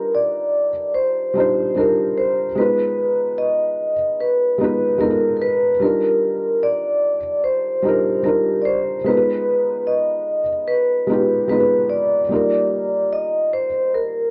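Lo-fi hip hop with a cosy, nostalgic mood and a swung 4/4 feel, cut from a longer piece. A dark, ringing vibraphone with slow motor vibrato carries the melody up front through a low-pass filter. A soft, felt-muted upright piano, mellow and intimate with audible action noise and short sustain, plays the accompaniment through cassette tape and its own low-pass filter over Ebmaj9 and Abm6 chords, and the mix sits in a wet studio reverb coloured by worn, warbling old tape with pitch drift.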